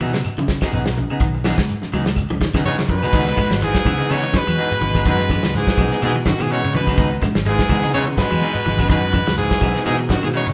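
Funky and intense, this afrobeat excerpt in C# minor at 125 BPM with a swung sixteenth feel sets a dry, tight 70s drum kit, a round fingered bass, two twangy slightly broken-up electric guitars (one on bright arpeggios in the background, one on spring-reverbed stabs), and very quiet woody claves, hard-hand congas and grainy shekere under a C#m9 chord, until at 2.7 seconds a brilliant, forceful trumpet melody enters up front with breathy baritone and raspy alto saxophone second lines, just ahead of a drum fill at 2.8 seconds, all in a live-room studio reverb.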